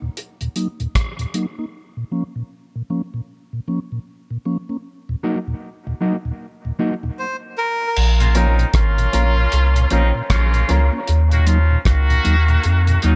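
Spacious and meditative, this excerpt of slow dub reggae at 77 BPM in Bb minor opens on a filtered break built on a flute-like tonewheel organ turning through a slow rotary speaker, with a brief touch of cloth-damped, thuddy drums before a dark, clean electric guitar drifts through dub echo at 5.2 seconds and a reedy, nasal melodica adds a short echoing phrase at 7.2 seconds. At 8.0 seconds the tight-kicked kit returns beside a deep, round sub bass sitting up front, joined moments later by a vintage-toned horn section carrying a second line through echo and worn baby grand piano stabs with long sustain, all set in a small, lightly reverberant room.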